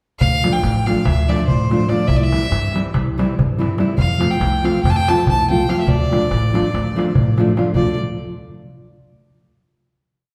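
Balkan folk in the manner of a wedding band, a short, restless and virtuosic whole piece in a brisk 9/8 in D minor, moving through Dm, C and F before settling on a final chord at 7.7 seconds. A clear, earthy violin with light vibrato bows a motif-based melody in period phrases, sounding distant, while an up-front nylon-string guitar is fingerpicked in off-beat triad chords and a woody, thumpy pizzicato upright bass on gut strings plays root and fifth on the main beats. A crisp metal-shell darbuka played with soft hands carries a two-stick drum pattern, and the whole band is heard from further back in a wet recital hall.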